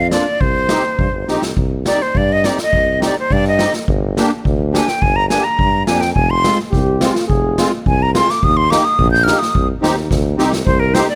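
Bittersweet and festive, this klezmer excerpt gathers speed throughout as a breathy, bright silver flute carries the melody up front and takes a solo from 1.6 to 10.7 seconds, over a warm tuba bass, a reedy, shimmering musette accordion and a street-band drum kit with a boomy kick that adds a couple of fills, while a trombone with light vibrato contributes a brief second line at 6.7 seconds, captured close and detailed with light reverb.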